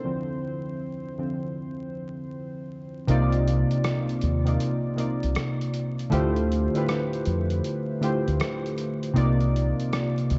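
Lo-fi hip hop with a nostalgic, melancholic mood and a swung feel, opening with warbling, detuned synth keys playing alone under a filter sweep until 3.1 s, when a round, punchy fingered electric bass and a muffled, pitched-down sampler-style kit of hi-hat and rim click enter beneath the mellow, chorused keys, the whole piece wrapped in a dark production with light reverb and vinyl crackle.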